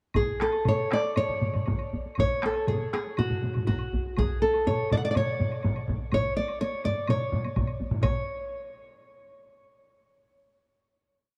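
A dark production with light reverb frames this short, powerful and ceremonial piece of Japanese traditional taiko music in C# miyako bushi and 4/4, speeding up from 118 to 137 BPM. Four taiko ensemble parts, struck with hard or heavy sticks and mostly close and dry, weave repeating patterns and taiko phrases, two of them sitting in the background; one has a vintage, band-limited tone, and a woody woodblock ticks out its own repeating pattern beneath them. Up front, a small, fingerpicked nylon-string guitar carries an ornamented modal melody, and it rings on alone after the drums stop around 8.5 s, closing on a final note that lasts until 11.4 s.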